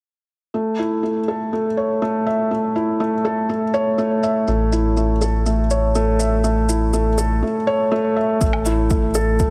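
Piano and strings electronica with a tender, hopeful mood, this short excerpt opens on a soft, felt-muted upright piano riff, intimate and up front with a touch of delay, over a filtered shaker and woodblock that carry a filter sweep, before a round sine sub bass with sidechain pumping joins at 4.5 seconds and a deep, layered electronic kick drum arrives at 8.4 seconds, all set in a light reverb.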